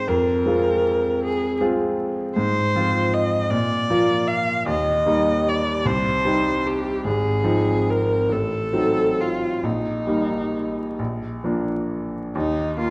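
A romantic classical duo for viola and grand piano in Eb major, this short passage cut from a longer piece moves in a lyrical 6/8 at a slow, rubato pace of about 43-54 BPM in dotted quarters. A single bowed viola carries the melody from Eb4 to F5, its tone rich and focused with vibrato, sitting up front. The grand piano, bright and brilliant yet natural, supplies the accompaniment in a lower register from Ab1 to F4, also placed close to the listener. The harmony opens on Fm, passes through Bb, Eb and Cm, reaches an Adim7 at 8.3 seconds, and settles through Eb/Bb and Bb to a bare Eb5 at 12.3 seconds. A recital hall reverb with a 1.5-second decay surrounds both players, while the dark, warm production and a touch of vinyl crackle lend the whole a warm, aged glow.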